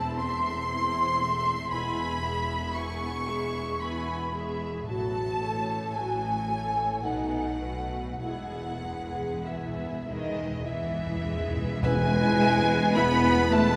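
Classical slow romantic movement for symphony orchestra in E major, tender and unhurried at 48-60 BPM in a rubato 3/4, where a lush, vibrato-rich violin section sings the melody over a second violin line, an airy hollow flute line, smooth violas, distant cellos and double basses, joined from 1.7 seconds by very quiet dark French horns and close, dry timpani, with a barely audible cymbal swell and tam-tam under the timpani fill from 8.2 seconds, and a distant oboe, background clarinet and bassoon and clear trombones arriving for an accent at 11.8 seconds, all bathed in a long church reverb.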